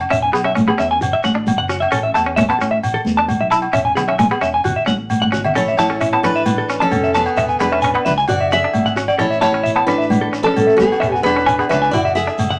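A wet studio reverb gives this sunny, danceable highlife guitar band a lively sheen at 132 BPM in A major, with ringing agogo bells, damped high-tuned congas and a grainy, mellow shekere driving a straight 4/4 over a dark, round fingered electric bass. A compressed clean electric guitar plays chords up front while a bright, scooped second clean guitar spins arpeggios through a harmonic tremolo, moving through E, Dadd9/F#, A and F#m9. After a drum fill at 5.1 seconds, a full-bodied picked steel-string acoustic guitar enters at 5.6 seconds to carry the melody, its finger squeak audible.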